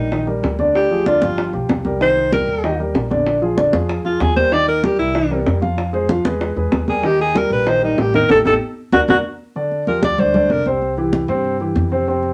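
A clear alto saxophone with light vibrato solos up front over a dark, intimate grand piano with audible action noise and a woody pizzicato upright bass in this sunny, sophisticated Afro-Cuban jazz excerpt, joined almost at once by round, low-tuned bongos and high-tuned, thick-skinned congas played with soft hands, and a band accent from 8.3 seconds carries a drum fill before the bongos drop out at 9.2 seconds and the saxophone falls away at 10.7 seconds.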